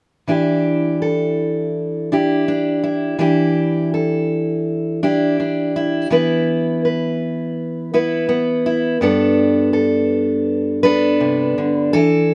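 Hopeful and pastoral, this short folk passage features a single fingerpicked steel-string acoustic guitar, cut from a longer piece. The guitar enters at 0.3 seconds and carries everything alone in a straight 4/4, sounding warm, full-bodied and up front with the fresh strings and dreadnought body shaping its tone. Its part spans from G2 up to B4, moving from an Em7 opening to an E5 at 6.1 seconds and settling onto a Gadd9 at 9.0 seconds. A moderate studio reverb gives the instrument a natural sense of room, as though played live in a single space. The guitar rings out until 12.3 seconds, leaving an open, unhurried impression.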